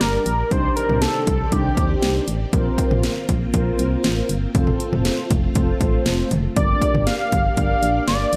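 Synth-pop in Bb major at 119 BPM, this nostalgic, wistful excerpt moves through Gm, Cmadd9, Bbsus2 and F over light reverb, driven by an up-front, overdriven house drum kit with a punchy kick, cracking snare and warm hats beneath a round, dark FM bass. Mellow synth brass plays detuned sawtooth accompaniment with chorus and vibrato, while a swirling, vintage string machine warbles in the background with ensemble chorus and phaser. A thick, nasal unison lead carries the melody with digital delay and vibrato, dropping out after 2.3 seconds and returning at 6.6 seconds.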